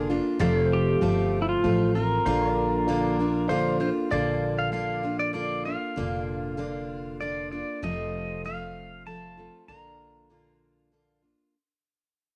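A twangy pedal steel guitar carries the melody up front from 0.7 seconds, its clean, compressed tone played with fingerpicks and slide, shaped by volume swells in this sunny, down-home country waltz in Bb major at 97 BPM. Beneath it, a picked dreadnought steel-string acoustic guitar holds the accompaniment, sitting close with a cassette-tape color shared by both pedal steel parts. A second pedal steel lays sustained chords in the background until 7.8 seconds, while a woody, thumpy pizzicato upright bass anchors the low end. A dark, mellow, slightly detuned upright piano adds very quiet accompaniment only in the opening 4.0 seconds. The harmony moves between F and Bb, and the piece, cut from a longer performance, fades out from 4.1 seconds with light reverb and the studio ambience of a home cassette recording.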